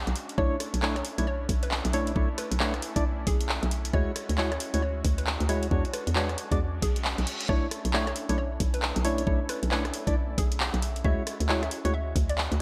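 A skippy two-step garage groove at 135 BPM with a 62% swing on the sixteenths drives this soulful excerpt in B dorian, built on a layered, knocking electronic kick and an up-front, punchy analog drum machine of handclaps, hi-hat and rim click with gated reverb. A bouncy FM bass sits forward in the mix, while a mellow, percussive organ stab with chorus and delay enters at 0.4 s and a hollow square-wave pluck carries the melody in the background through analog chorus and digital delay. Beneath them a smooth, warbling vintage pad sustains Bm11, Dmaj9#11 and E13 chords with sidechain pumping, a reverse cymbal sweeps in at 6.9 s, and the whole has a bright 1980s-style digital sheen with light reverb.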